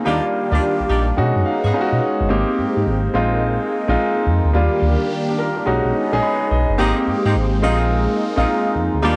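R&B at 107 BPM with a 16th-note swing, this bouncy, upbeat excerpt moves through Ebmaj7, B6, Abmaj7 and Bb7sus4, carried by a clear, polished baby grand piano that adds fills at 1.2 and 5.9 seconds over a swirling, detuned analog pad treated with phaser and chorus. A smooth, dark synth bass glides up front with portamento, vibrato and transformer saturation, while a mellow horn section punctuates with tight, octave-doubled jazz stabs at the start and again from 6.8 seconds. The whole thing sits in a small room with light reverb and the dulled, cassette-tape sheen of a home recording.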